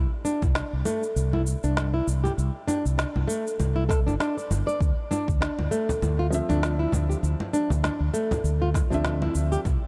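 A thumb-plucked nylon-string guitar, dark and full-bodied, plays delayed arpeggios up front in this earthy, warm organic downtempo piece in D minor at 99 BPM, with a 16th-note swing. Beneath it sit a round, fretless electric bass with sidechain pumping and a deep, tape-warm electronic kick, while an electronic shaker, congas and a woody snare add a small-room texture, all under light reverb. After the harmony settles on Dm7 at 4.8 seconds, a large acoustic frame drum enters in the background at 5.9 seconds, and a felt-muted upright piano follows at 6.3 seconds, soft and intimate, with audible action noise, delay and pumping, before this cut from a longer piece ends.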